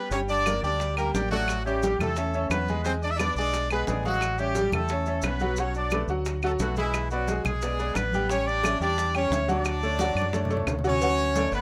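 A bright, tight horn section carries the melody up front from the very start, joined at once by a clear but worn grand piano whose short-sustained chords supply the accompaniment in this sunny, danceable salsa, cut from a longer piece. Almost immediately a deep, round fingered electric bass, dark and punchy, anchors the low end, while congas, bongos with cowbell and grainy, mellow maracas sit in the background, and woody claves, close and dry, come in at 0.5 s. The tempo is a brisk 176 BPM in straight 4/4 in D major, and the harmony travels from Gmadd9 through A7, E7 and Bm9 before settling on Dmaj7 and then D. The horns are close-miked with light vibrato in a pop style; the congas have a thin, medium-tuned skin under soft hands; and the high-tuned bongos are struck with hard hands and have a vintage, band-limited tone. A drum fill arrives between 10.0 and 11.0 s, and the piece sits in a moderate small room with the rough feel of a home demo mix.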